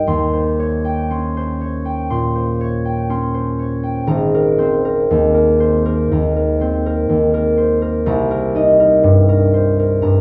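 This classical solo piece for concert harp, taken from a longer work, unfolds in Ab major at a rubato 60 BPM in 4/4, with a peaceful, dreamy mood. The thumb-plucked harp sounds acoustic, warm and ringing, placed up front and spanning Ab1 to C6, its harmony settling on Abmaj9 at 4.1 seconds and moving to Cm7 at 8.1 seconds. A wet stone-room reverb surrounds the instrument.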